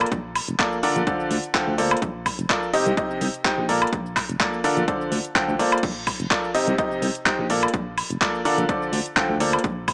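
A bright, slightly detuned upright piano leads this feel-good piano house cut, its woody riff sitting up front with audible action noise, long sustain, vintage 12-bit sampler grit, digital delay and sidechain pumping. At 126 BPM in 4/4 with a 55% swing on the 16ths, the joyful groove in Bb major cycles through Bbmaj7, Dm7 and Cm chords across a single section cut from a longer piece. A round, mellow FM bass with a fast attack and decaying notes pumps along underneath. A layered garage kit brings crash cymbal, handclaps, metallic hi-hats, shaker and woodblock with a tape-warm, up-front character in small room ambience, while a punchy, overdriven electronic kick enters at 0.1 seconds. Light reverb and digital ambience frame a mix that has a small-speaker quality.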